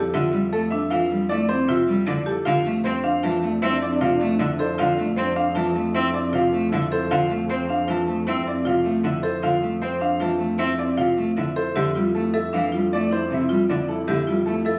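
Captured on a phone in a recital hall, with added club reverb, compression and a dulled top end, this bright, propulsive fragment of minimalist classical pattern music in 6/4 sets a clear, slightly worn grand piano melody over woody, boxy marimba arpeggios on padauk bars, an up-front bowed cello with focused vibrato, and a smooth, even bowed double bass holding F2, while an airy, mellow alto flute with crisp attack sits in the background with a second line from 2.5 to 6.9 seconds and returns at 11.8 seconds as the harmony moves from Dmadd9/F back to Fmaj9.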